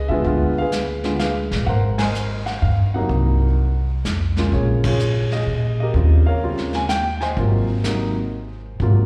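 Heard as a live gig through the venue's PA, this short cut from a longer jazz piano trio performance sits in recital hall reverb with light reverb and small room ambience. It swings playfully in 3/4 at 126 BPM in Ab mixolydian, moving through chords such as Ddim7, Ab9, Cm7b5, Eb13 and Ab13. The grand piano carries the melody up front with an intimate, natural tone; its action noise is audible, and a slapback echo trails its lines. The upright bass plays pizzicato beneath it on steel strings, woody and thumpy and sitting prominently in the mix. A vintage brush kit enters at 0.2 seconds, muffled and lo-fi with a rolled-off top, dark hi-hat and ride cymbals, a medium-tuned snare, a punchy kick and its own slapback echo. The band strikes accents together at 1.9 and 4.8 seconds.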